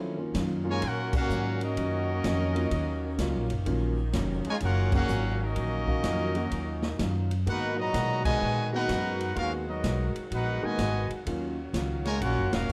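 Big band swing in Eb minor at 126 BPM, this brassy, swinging excerpt moves over a dark, warm club-room sound, with chords shifting from Ebm9 to Abm9 at 7.5 seconds and back to Ebm9 at 11.3 seconds. A woody, growly pizzicato upright bass sits up front from the first beat, joined by a concert grand piano with deep bass, a picked steel-string acoustic guitar in the background with audible finger squeak, and a very quiet saxophone section holding sustained chords with vibrato. The drum kit comes in at 0.3 seconds with a punchy kick, medium-tuned snare, hi-hat, ride and crash in a natural studio-room tone. At 0.7 seconds the trumpet section takes the melody, clear and present with light vibrato and a touch of plate reverb, while a warm, close-miked trombone section carries a second line behind it. The full band hits accents at 1.1, 4.9 and 8.2 seconds, and the piano drops out at 11.6 seconds as the cut closes on one more ensemble accent.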